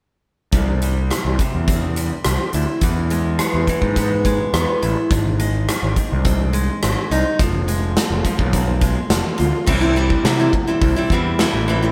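A fuzz-laden picked electric bass, overdriven and up front, drives this anthemic, restless quiet-loud alternative rock passage at 105 BPM in C major, together with boxy parlour-style steel-string acoustic guitar arpeggios and a big, punchy rock kit with bright cymbals as the band plays live in a dry room through C, E, Ab and Fm before returning to C at 9.7 seconds.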